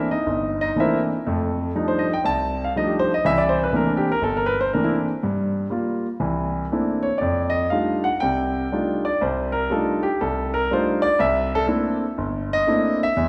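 A warm concert grand piano plays solo jazz in C mixolydian at 121 BPM, its playful, sophisticated swing loosened by rubato, with deep bass and a natural, up-front tone ringing in a reverberant hall over rich chords such as C13, F13 and Gm7 in this brief cut from a longer piece.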